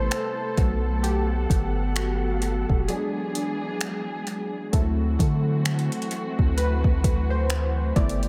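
Longing and sensual, this slow contemporary R&B excerpt at 65 BPM with a swung 16th feel sets detuned, sawtooth analog keys under chorus and delay, carrying a solo and a break at 2.9 seconds, over a deep sine 808-style bass, a produced drum kit of finger snaps, metallic hi-hat and soft kick, and a veiled, distant muted string section with lush bowed vibrato, all in an echo-heavy digital space moving from Am7 through Gmaj9 and E7 to D9.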